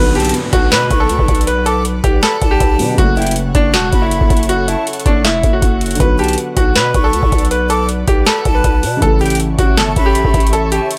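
A booming, overdriven analog drum machine sits up front with a deep kick, plus a crisp snare, metallic hats and handclaps in a short room, driving this melancholic, hard-hitting trap excerpt at 159 BPM in a half-time feel in B minor. A brilliant, worn concert grand piano carries the melody with digital delay over a growling, buzzy 808-style bass, while a breathy, close-miked jazz flute adds a delayed second line high above. Deeper in the mix, a felt-muted upright piano with audible action noise plays soft accompaniment, an ethereal, detuned pad holds chorused chords from 0.5 seconds, and a downlifter sweeps through the first 3 seconds over a Bm, F#m, Bm, A progression.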